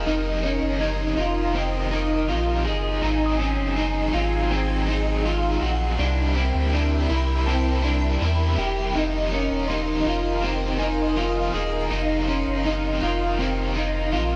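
Blissful and dreamy, this dream pop excerpt drifts at 81 BPM in a straight 4/4, cycling through F7sus4, Ab7 and C7 before returning to F7sus4 at 9 seconds. A deep, full sub bass with an added octave sits up front, its sine-and-triangle tone mellow and sustained, while a twangy, slightly broken-up electric guitar through a small old amp picks out arpeggios, soaked in ensemble chorus, tape echo and shimmer reverb. Beneath it, an overdriven semi-hollow guitar supplies bright, hollow-bodied accompaniment with tremolo and lush chorus. A vintage string machine holds soft-attack sustained chords in its upper register, swirling and warbling through phaser and ensemble chorus. In the background, a clean tine electric piano adds a gentle texture with tape echo until it drops out at 13.4 seconds, all set in a dark production with a moderate plate reverb of 2.9 seconds.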